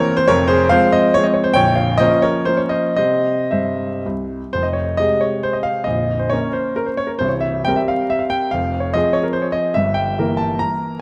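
Dark production with vinyl crackle and moderate scoring-stage reverb frames a clear, intimate grand piano, up front with audible action noise and long sustain, as it plays alone through a wistful, capricious romantic classical dance in triple time, its dotted rhythms shaped with rubato, in a passage cut from a longer piece.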